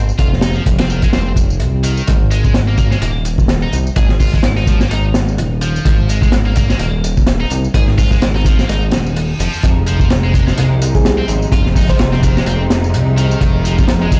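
A swung 127 BPM breakbeat groove in F minor pentatonic drives this raw, swaggering excerpt, with a crunchy, saturated drum kit up front beside a fat, detuned sawtooth bass, a faint electronic tambourine, and a distorted, double-tracked high-gain guitar riff with dub echo, while a reverse cymbal at 8.9 seconds ushers in bowed strings carrying vintage 12-bit grit and sidechain pumping at 9.6 seconds, and a sparkling, bell-like FM electric piano with chorus and an AM radio tone adds a brief melody from 10.9 seconds, all played through a big sound system in a bare room with large studio reverb.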